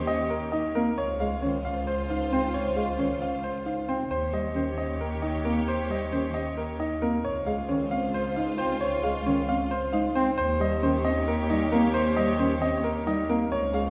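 From the first moment, a bright, brilliant baby grand piano sits up front with the melody, set against a mellow, soft-attacked bass clarinet, a woody marimba with soft mallets buzzing through arpeggios, sustained bowed strings and a bowed double bass section, all five parts sounding together. This is propulsive minimalist classical pattern music in Eb mixolydian, pulsing at 268 eighth notes per minute in an asymmetric 7/8 with a straight feel. The harmony shifts between Eb7 and Dbmaj7 across the 13.9 seconds, a short span cut from a longer piece. The rich, vibrato-laden string section holds smooth chords in the middle register, while the lush double bass section stays low and even beneath the bass clarinet's vintage-tinged accompaniment. The whole performance rests in a wet scoring-stage reverb that gives it the resonant air of a church or concert hall.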